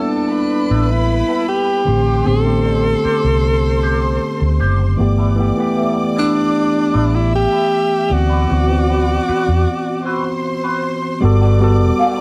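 Soul in a romantic, lush mood, this short section is led by a breathy tenor saxophone playing a jazz-style solo melody with soft attacks, scooped notes and vibrato until 10.5 seconds, over a bowed symphonic string section carrying a rich, focused second line up high. A worn, slightly out-of-tune tine electric piano supplies the accompaniment, a bright, twangy picked guitar plays a riff through wah and spring reverb, and a dark, round foam-muted fingered bass enters at 0.7 seconds, sitting up front. The harmony moves through G69, Am11 and D13 before a break at 9.7 seconds resolves to Gmaj9, all in a small room with light reverb.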